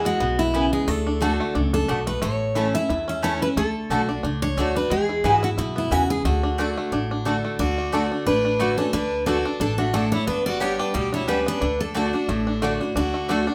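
A bright, up-front steel-string guitar carries the melody in this rustic, lively bluegrass passage, its jumbo body giving the picked line a full-bodied ring. A second steel-string guitar, a dreadnought with audible finger squeak, plays accompaniment beneath it. A twangy banjo played with fingerpicks runs percussive arpeggios, and a woody, dark upright bass holds the low end with pizzicato notes. From 0.5 s a mandolin adds warm, double-string stabs over a swung 4/4 feel. A new section begins at 7.6 s, where a single fiddle joins in the background with a clear, biting tone, light vibrato and an airy bow, while moderate studio reverb lends the ensemble a natural sense of space in this fragment of a longer piece.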